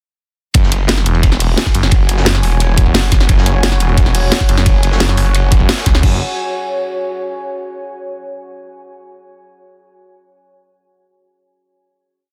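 This is a short, aggressive and futuristic piece of dark technical drum and bass, and it opens at 0.5 seconds straight into the drop with the full rhythm section and bass. An electronic kick with a knocking, layered punch drives the broken beat. A tight, technical drum and bass kit sits up front alongside it, with a cracking snare, closed and open hats and crash. Behind them a looped, edited acoustic breakbeat adds a gritty, saturated layer with dark cymbals and a rolled-off top. The snarling distorted saw bass dominates in chopped, growling phrases, its detuned sawtooth tone shaped by tube saturation, a moving notch and sidechain pumping. From 1.1 seconds a deep, moody ambient pad enters with chorused, reverberant sustained chords that also pump against the kick, and the track closes on a final chord at 6.0 seconds, all held together by a dense, heavily limited master.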